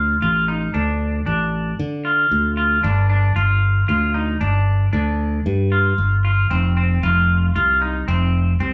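Set in a stone room with moderate reverb that captures a band playing together, this driving, tense progressive instrumental moves in 7/4 as a clean, twangy electric guitar picks up-front arpeggios over a growly, bright fingered electric bass, shifting from D minor to G5 at 2.8 s and F5 at 6.5 s before the cut at 8.7 s.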